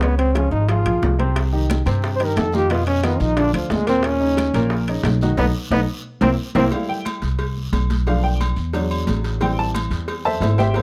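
A forceful, up-front trombone with vibrato opens this lively, sophisticated Afro-Cuban jazz excerpt over woody pizzicato upright bass, clear short-sustained upright piano, high-tuned damped congas, tight vintage bongos and cowbell, and ringing timbales and agogo bells, with a raspy, saturated guiro joining at 1.4 seconds, a band accent arriving at 5.4 seconds, and the piano taking the solo from 6.7 seconds in a dark production with light reverb.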